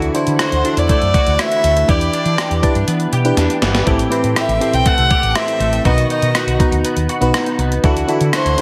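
A straight 4/4 beat at 121 BPM from a thumpy, gated 80s digital drum machine, with its gated reverb snare, hi-hat, rim click and a drum fill at 3.4 seconds, drives this urgent, dramatic excerpt of 1980s-style pop in E minor, cycling through Dadd9, Em7, Am7 and B. A round, hollow-bodied fretless electric bass sits beneath a glassy, bell-like FM electric piano with chorus, while a bright, twangy twelve-string electric guitar picks a clean riff through ensemble chorus and tape echo. From 0.4 seconds a dark, sul tasto fiddle carries the melody up front, its light vibrato and portamento heard close in a lightly reverberant space.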